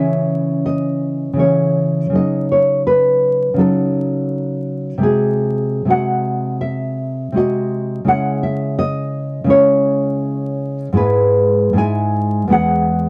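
A solo nylon-string guitar carries this short romantic fragment, its tone dark and full-bodied, thumb-plucked, with finger squeak heard up front. The mood is warm and tender, set in C# minor at 82 BPM in 4/4, though the rubato feel lets the pulse stretch and breathe. The harmony moves from C#m through D#m7b5 over a C# bass and G#7 over B#, returning to C#m at 8.1 seconds before turning toward E/G# and settling on E at 12.5 seconds. The guitar ranges from a deep E2 up to G#5 over its 13.1 seconds. The sound is a dry, close 1970s-style studio take with moderate booth ambience and vinyl crackle beneath it.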